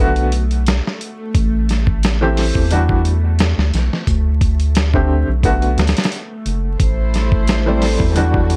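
A clear upright piano opens this melancholic, cinematic trip hop excerpt, its woody tone carrying audible action noise, long sustain, tremolo, 12-bit sampler grit and tape echo as it plays the accompaniment. It sounds alongside a deep, round analog bass with a fast attack that sits up front, and a tense, bright, string-like drone with phaser and its own reverb, tucked in the background. At 0.2 seconds a dusty, compressed sampler-style drum kit arrives with a thumpy kick, a medium-tuned snare and hi-hat, playing a lightly swung groove in 4/4. Brooding minor-seventh and suspended chords shift every half bar or so. A chamber string section enters at 6.8 seconds with soft, sul tasto sustained chords and light vibrato. The production is dark and dry, with vinyl crackle running underneath.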